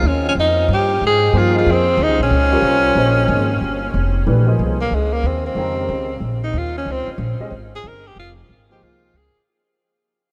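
Intense and searching, this modal jazz excerpt swings at 184 BPM in Bb dorian over a Bbm9 chord, with a clear tenor saxophone carrying the melody with light vibrato, scooped notes and analog delay over a woody, thumpy pizzicato upright bass on gut strings, while a warm concert grand piano with audible action noise and ensemble chorus enters at 1.3 s, and the saxophone takes a solo from 4.3 s as the dreamy mix, soaked in huge ambient reverb, fades out.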